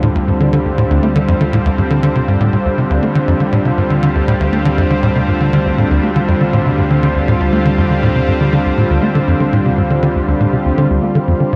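Ambient, sequencer-driven space music in D minor, this hypnotic, mysterious passage moves at 120 BPM in a straight 4/4 and is cut from a longer piece. A tight, punchy sequencer bass drives a riff between D2 and A3 throughout the 11.6 seconds, its fast-attack, decaying filter pluck and moving notch given a subtle chorus and delay. Above it, a lush, thick unison pad of detuned sawtooth and square waves holds sustained chords from D3 to F4, bright and up front, its slow attack and long release bathed in chorus and shimmer reverb. Deep in the background, an analog drone sits on a single low D2, its pulse-width modulation lending a mellow, warbling, vintage character under its own chorus. The whole excerpt rests on one Dm7 chord, and a moderate spring reverb with a 2.5-second decay gives the echo-heavy mix its spacious feel.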